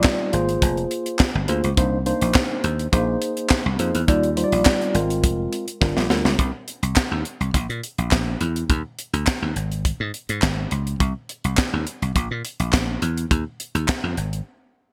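A mellow tine electric piano and a tight, up-front funk kit of kick, high-tuned snare, hi-hat and handclaps open this funky, danceable early-eighties boogie funk excerpt, with the drums carrying a gated reverb. A dry, punchy thumbed slap bass, bright and foam-muted, joins almost at once beneath lush extended chords, and the piano drops out during a drum fill near 6.0 seconds. Drums and bass then carry a sparser second section through chordless stretches of groove, all in a crisp, digital-era production with a small room's light reverb.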